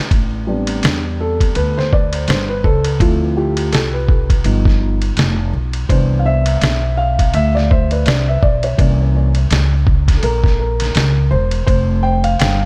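Mellow and cool, this jazz-hop excerpt rides a swung groove from a compressed, pitched-down, sampler-style drum kit with a thumpy kick, fat snare, hi-hat and ride, sitting up front beside a woody pizzicato upright bass. A dark, boxy concert grand piano with deep bass and tape echo plays a solo through the whole clip, moving through rich chords from Am11 to Cmaj7 and C7b9 before settling on Fsus2 at 11.7 seconds. The sound is dry, with little reverb but an echo-heavy mix.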